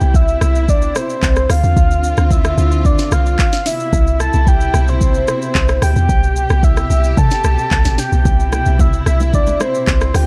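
Set in a digital ambience, this relaxed amapiano excerpt features a mellow, detuned octave-layered synth lead with chorus and tape echo carrying the melody over lush, woody bowed strings pumping under sidechain, a deep, round log drum bass with a dark, decaying punch, an up-front electronic kit of kick, sharp snare, crisp hi-hats, handclaps, rim clicks and shaker, and ringing congas and bongos that slip in at 8.3 s in the background.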